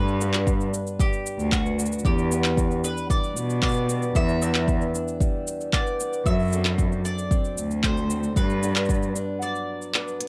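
A round, double-strung picked mandolin melody, a boxy fingerpicked ladder-braced acoustic guitar playing arpeggios with audible finger squeak, a filter sweep, plate reverb and tape echo, and a rich bowed cello bass with vibrato and tube saturation open this delicate, intimate folktronica excerpt in E minor at 114 BPM, soon joined by a tape-toned organic electronic kit of cabasa, handclaps and smooth hi-hat and, from 0.5 seconds, a deep, up-front electronic kick, over Gmaj7, Em7 and D7/F# chords before a break at 9.4 seconds.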